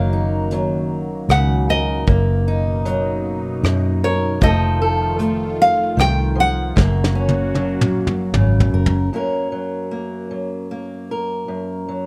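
Softly lit by light reverb, this tender, intimate acoustic folk-pop ballad fragment in a gentle 3/4 sway sets an up-front, full-bodied nylon-string guitar melody over a fingerpicked steel-string acoustic guitar, a round, foam-muted vintage electric bass, and a dark, smooth brush drum kit with a punchy kick, while a swirling, airy analog pad with phaser and chorus sits in the background; a drum fill arrives at 6.8 s, and the steel-string guitar carries on alone from 9.1 s until the cut at 12.1 s.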